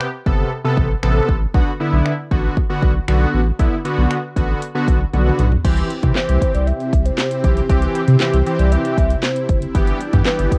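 A big, bright polysynth anchors this energetic, bittersweet dance-pop excerpt at 117 BPM, its fat, nasal, detuned sawtooth tone sitting up front with chorus, sidechain pumping and plate reverb as it plays accompaniment under chords moving from Amadd9 to Bm. A house drum kit runs the whole way, layered and punchy with a cracking snare, metallic hats, handclaps, finger snaps, toms and crash, and a drum fill arrives at 5.1 seconds. A deep, thick saturated sub bass enters at 0.3 seconds and pumps beneath everything. At 5.6 seconds the harmony shifts to C and a lush supersaw pad joins with soft-attack sustained chords, followed at 6.2 seconds by a hollow, woody clarinet-like synth lead with vibrato carrying a dark melody before the closing G6. The whole has the light reverb and softened character of a home cassette recording.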